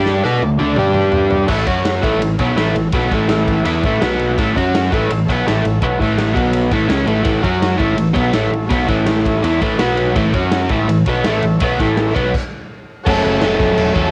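Captured on a home cassette with light reverb, this raw, rowdy garage rock excerpt charges along at 166 BPM in A mixolydian, opening with a drum fill from a gritty, saturated kit that sits in a stone room with a rolled-off top. An up-front, double-tracked overdriven guitar hammers a bright riff over chords circling A, F#5 and B5, while a growling, round picked bass pushes underneath and a buzzy combo organ holds clean sustained chords with light vibrato in the background. After a sudden stop at 12.3 s, the band lands on F#m at 13.1 s as an overdriven combo organ takes a brief melody on a single A4.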